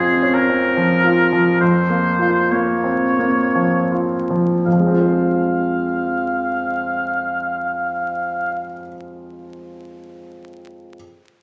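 Captured on a phone in the room, this short excerpt carries a vinyl crackle over the moderate bloom of a scoring stage. It is a brooding, tragic classical fragment in triple time, played with a flexible rubato feel that slows over the first 4.7 seconds. A concert grand piano carries the melody with a clear, natural tone and a deep bass, sitting close and present throughout. An oboe joins from the start as a solo second line, its warm voice touched with light vibrato and a roomy, classical-style sound, before it stops at 8.6 seconds. The brief passage moves through two sections over dark minor harmony, and the piano carries on alone until the cut.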